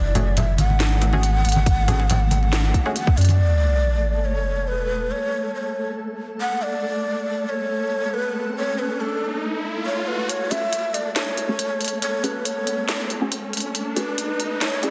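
A dense, heavily limited mix in a cavernous echo-chamber space carries this meditative deep dubstep excerpt in F# minor at 139 BPM with a half-time swing, where a breathy, close-miked low ney sings an unsteady, vibrato-laden melody through dub echo over a flickering granular texture. A thick saturated sub bass, hard-hand congas and bongos, a garage kit with a cracking snare and crisp hats, and muted detuned chord stabs with 12-bit grit drive the opening, with a tight electronic kick joining at 1.7 seconds and the stabs dropping out at 2.9 seconds. At 3.4 seconds a sub drop gives way to sparse ney and texture, and a riser rises from 8.0 seconds before the returning kit and filter-swept stabs build from 10.3 seconds.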